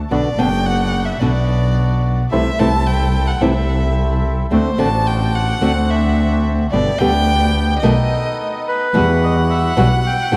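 A rubato tango in 4/4 at 109 BPM, this sultry, dramatic fragment of a longer piece is carried by an up-front bowed double bass, warm and expressive with vibrato and portamento, beneath fingerpicked flamenco guitar accompaniment whose finger squeaks come through. A rich bowed violin takes the solo with its own vibrato, sliding phrases and a touch of delay, set over smooth, reedy, dark bandoneon stabs as the harmony moves from Bm through D7 and G toward B7. After a brief break at 8.4 seconds, a second mid-forward bandoneon enters with a delayed melody at 8.7 seconds, landing on Emadd9, while the dreamy mix is soaked in lush hall reverb.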